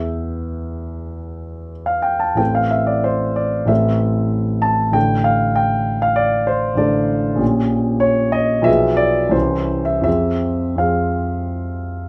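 Brooding and passionate, this romantic character piece for solo piano moves with a rubato feel in 4/4 at roughly 79-98 BPM, cut from a longer work and tuned to A4 = 441 Hz. A warm concert grand sits up front with a deep bass, ranging from A1 to A5 as the harmony travels from E through A minor and D before settling into F minor from 7.4 s, passing through a diminished seventh and C on the way to the F minor arrival at 10.1 s. A moderate small-room reverb gives the instrument a close, intimate setting throughout its 12.1 seconds.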